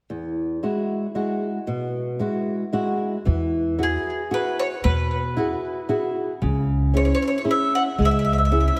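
A picked bowl-back mandolin with double strings and a touch of delay carries the melody from 3.8 seconds in this sunny, romantic Italian folk serenade in a rubato triple metre, over a fingerpicked flamenco guitar with subtle chorus that opens alone and a woody, growly pizzicato upright bass entering at 3.3 seconds, all moving from Eadd9 to C#m in a dreamy mix soaked in lush hall reverb.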